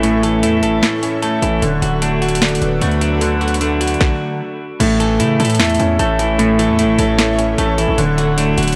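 Lightly reverberant digital ambience frames this wistful yet triumphant half-time trap excerpt in A major at 151 BPM, where a clear, intimate concert grand piano with audible action noise and long sustain carries the accompaniment, a clean, up-front electric guitar picks arpeggios through spring reverb and tape echo, a distorted, saturated 808-style bass hits hard with a noise layer, a blurred, detuned granular cloud pad holds evolving chords in the background, and an overdriven trap kit with a hard-clipped kick, sharp snare, metallic hats, finger snaps, crash and 12-bit sampler grit drives the groove until a stop from 4.0 to 4.8 seconds sets up the second section.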